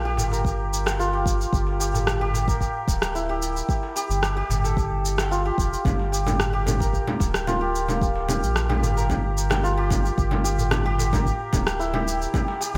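A bright 1980s-style digital production wrapped in a lush hall reverb frames this meditative, earthy slice of organic downtempo in G dorian, moving at 111 BPM in a straight 4/4 and cut from a longer piece. Up front, a shimmering, hammered santur rings out arpeggios through a digital delay over a round, dark analog bass with a fast attack, while tape-warm electronic shaker, rim click and congas sit close with gated reverb, a deep layered electronic kick joins at 0.4 seconds, and a crisp metal-shell darbuka sounds very quiet and distant as if in a large room. The harmony circles from Gm7 through Dsus24 and F/G before returning to Gm7 and Dsus24.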